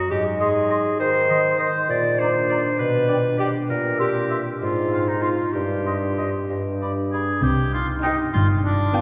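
A playful, whimsical cinematic cue in C minor at 66 BPM in a lilting 6/8, magical and sneaky in mood. It opens with an up-front, fingerpicked concert harp ringing out arpeggios beneath a bright, vintage solo clarinet, an airy background flute section, a distant oboe and a warm bassoon accompaniment, all bathed in wet cathedral reverb. At 7.4 seconds the clarinet, flute and bassoon have dropped away, and dark, soft-attacked cello and double bass sections enter beneath the continuing harp and oboe. Intimate sul tasto violins and violas join at 8.0 seconds before the fragment breaks off on a G7 chord.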